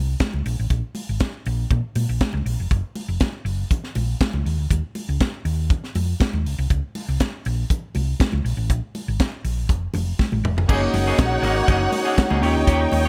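Sultry and danceable, this disco excerpt opens on a dark, round hollow-body bass up front, joined by a tight funk kit with a high-tuned snare and by bright, damped congas in the background, before a drum fill at 10.2 seconds. At 10.7 seconds a lush, bowed string section with slapback echo enters up front, over a slightly broken-up, twangy electric guitar, a worn, slightly out-of-tune electric piano treated with phaser, and soft-attack French horns holding sustained chords. The sound is dry and close, and the harmony moves from Gb69 to Eb7 in the closing bars.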